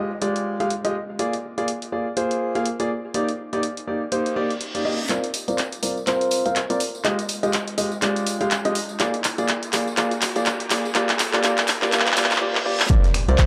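A bright grand piano leads this energetic, soulful piano house excerpt at 123 BPM in F dorian, its riff pumping under sidechain with a low-pass filter and dub echo, moving through Fm9, Bb7 and Ebmaj7 over a punchy analog drum machine of finger snaps, handclaps and hi-hat, with a swung 16th feel. At 5.1 s a hollow, organ-like FM bass and a close, dry tambourine join in the background as a filter sweep on the piano and reverse cymbals drive a build-up, while electronic downlifters and risers hover beneath. At 12.9 s an impact lands with a punchy electronic kick and a very quiet, gritty breakbeat kit, and moments later a breathy, flute-like synth lead touches C5, all in a dark production with moderate plate reverb.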